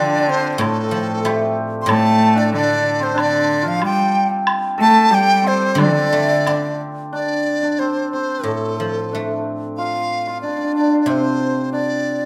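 Chinese traditional chamber music in D yu mode at 92 BPM, graceful and wistful, cut from a longer piece: a hollow large dizi carries the melody up front with a buzzing membrane, airy vibrato and soft attack, over a shimmering, ringing hammered dulcimer second line, a rich, nasal cello with gut-string tone that stops at 6.8 seconds, silvery fingerpicked guzheng accompaniment entering at 0.6 seconds, and a background woodblock that drops out at 6.6 seconds, all in a moderate recital hall reverb.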